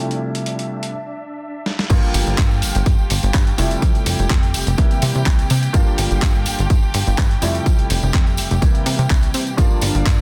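A swung 4/4 groove at 125 BPM drives this filtered disco house excerpt in G dorian, funky and nostalgic in mood. It opens with a present baby grand piano playing phased accompaniment and a lush, distant bowed string section holding sustained chords with vibrato, both pumping and filtered, while a gritty, overdriven sampler-style kit of snare, hi-hat, handclaps and crash cymbal sits in a small room. A filter sweep runs through this opening, a break starts at 0.9 seconds, and a drum fill at 1.7 seconds sets up the drop at 1.9 seconds. There a punchy, layered electronic kick drum with overdrive comes up front, joined by a plucky analog bass with a fast attack and a tambourine pumping in the background. The chords cycle through Gm7, Fmaj9 and C7 under digital ambience, and the master is dense and heavily limited.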